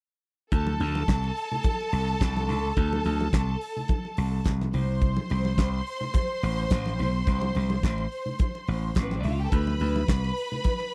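A dry, close 1970s-style studio sound with little reverb frames this sultry, glamorous disco passage at 107 BPM in straight 4/4, cut from a longer piece. Up front, a damped 70s drum kit pairs a fat snare and tight kick with hi-hat and handclaps under a rolled-off top, beside a punchy, amped slap bass, while a lush bowed string section adds intense vibrato above and hard-handed, thin-skinned congas sit in the background. The harmony moves from D5 to Am at 4.7 seconds and on to Bm at 9.5 seconds.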